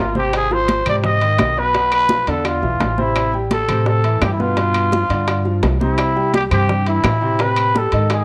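A straight, danceable 4/4 Afro-Cuban jazz groove drives this sophisticated clip, with a raspy, growling trumpet out front taking the solo melody with vibrato and scooped notes in a distant, roomy space, a steel-string pizzicato upright bass also up front, and a warm upright piano with long sustain in accompaniment, while bright, high-tuned congas, round, low-tuned bongos, woody claves and ringing metal-shell timbales sit in the background, entering between 0.2 and 0.3 seconds, all under light reverb and studio ambience.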